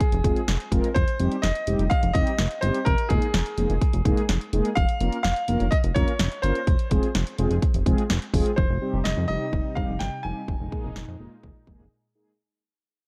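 Melancholic yet driving, this synth-pop excerpt moves in a straight 4/4 over a brooding progression that keeps returning to an F bass note beneath shifting chords. A clear concert grand piano carries the melody with a polished, present tone and a trail of analog delay. Up front, a punchy electronic house drum kit of kick, snare and hi-hat drives the music alongside a chorused synth bass that blends pulse and sawtooth waves into a glossy, saturated pluck. Mellow synth brass fills the accompaniment with round, detuned sawtooth chords touched by vibrato and chorus. At 8.6 seconds a bold, brassy analog pad slips into the background with a soft attack as the music begins to fade out, and a brief break arrives at 11.9 seconds. The production is dark, with light reverb around the parts.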